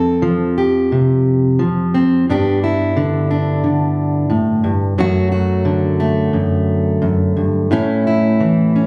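Captured on a phone in a club room, the sound is close and nearly dry, with the guitar sitting up front. This short cut from a longer folk piece features a single fingerpicked, plugged-in steel-string acoustic guitar with a full-bodied jumbo tone, playing alone from 0.0 to 8.9 seconds in D major. The pace is rubato around 88 BPM in 4/4, giving the passage a peaceful, nostalgic, unhurried feel. The harmony moves from Fsus2 to G at 2.3 seconds, then through D/F# to A, with the playing spanning F2 to A4. Finger squeaks on the strings add an intimate, human touch to the performance.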